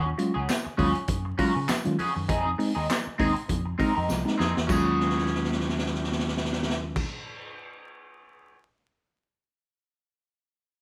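A saturated, gritty garage drum kit with a boomy kick and rolled-off top drives this short funky excerpt, joined by a twangy, slightly broken-up electric guitar through wah and spring reverb, a picked bass with an envelope filter, worn, slightly out-of-tune tine electric piano stabs, low-tuned congas, and a jingly tambourine in the background, with fills from 4.1 seconds and the drums ringing on alone until 8.6 seconds in a rough home-demo mix laced with vinyl crackle.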